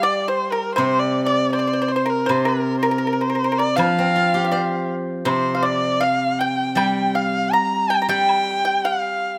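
Close, detailed microphones and light reverb give this short excerpt from a Chinese chamber piece an intimate, clear sound, with a festive yet graceful mood and a freely flowing rubato feel. Up front, a single bowed erhu carries the melody with a warm, focused tone, vibrato, portamento and a smooth top, while a bright, dry, percussive pipa played with fingerpicks traces a second line in the same register. A ringing, silvery steel-string zither, also up front and fingerpicked, supplies the accompaniment, and a woodblock in the background adds small-room percussion until 8.5 seconds.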